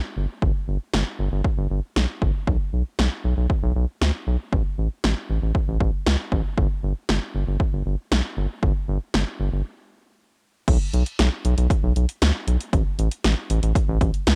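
A straight 4/4 synth-pop pulse at 117 BPM drives this nocturnal fragment, cut from a longer piece. A round analog bass enters at 0.2 s, sitting between G1 and D2 and blending square and sine tones with a wave-folded, evolving character, a fast attack and mellow sustain. A punchy analog drum machine follows at 0.4 s with kick, snare, hi-hat and crash cymbal, its dry, overdriven hits carrying a cassette-tape grit. Both parts sit up front in a nearly reverb-free home cassette recording. A break arrives at 9.7 s, and the music moves into a new section at 10.7 s that carries on until the cut.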